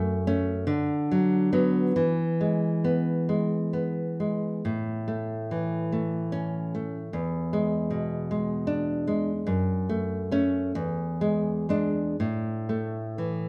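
A dark, up-front nylon-string guitar, fingerpicked with audible finger squeak, plays this sunny yet nostalgic romantic classical solo in a rubato 6/8 at roughly 39-53 BPM in dotted quarters, moving from F# minor through E and A to close on A5 at 12.2 seconds, all in a moderate large-studio reverb in this brief cut from a longer piece.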